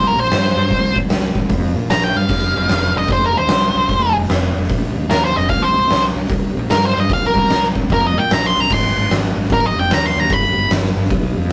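An octave-fuzz lead guitar takes a dark, picked solo up front from the first moment, its distorted tone spanning Bb4 to C6 before it drops out at 10.7 seconds. This gritty, heavy cut of blues rock power trio with southern rock leanings rolls on a swung 4/4 feel. A fingered electric bass runs underneath, overdriven into a growly, punchy fuzz, and carries on to the end at 11.5 seconds. An oversized, low-tuned drum kit joins at 0.3 seconds with crash cymbal, hi-hat, a boomy kick and a fat snare, sounding saturated and placed close in a bright stone room. The harmony moves from C5 through F5 and back before settling on Ab and G, and the whole passage has the rough feel of a rehearsal-room take with tube saturation and light reverb.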